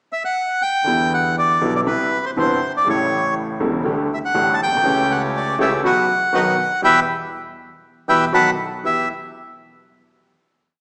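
A reedy, close-miked bandoneon carries a motif-based melody in period phrases in this melancholic, dramatic tango in E minor, played rubato around 120 BPM in 4/4, over a smooth, vintage grand piano and a distant, floating double bass bowed sul tasto with a soft attack, both moving in uneven groups of three and two eighths, while a second bandoneon adds background stabs in that same rhythm from 4.9 s, the band accents from 6.8 s, and the piece closes on an E minor chord at 8.8 s, heard through a recital-hall reverb with a small-speaker sound.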